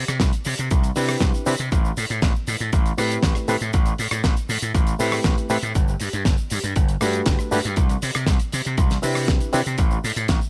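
The gritty slap bass opens at 0.0 s, bright, overdriven and up front, and within a moment the damped 70s drum kit and a punchy electronic kick join in, setting a sleek, cosmic nu-disco groove at 119 BPM in straight 4/4. The kit sounds dry and mid-forward, with a fat snare, hi-hat, rim click and shaker, while the layered, produced kick sits firmly at the front of the mix. At 1.0 s a barky reed electric piano enters with a reedy, lightly overdriven tone as if through built-in speakers, its sound pumping with sidechain and trailed by delay. The harmony moves from Cmaj9 to Am9, then through Gmaj7 and back to Cmaj9 before the chords drop out at 9.8 s. A small room reverb gives the parts a compact sense of space, and the recording is cut from a longer piece.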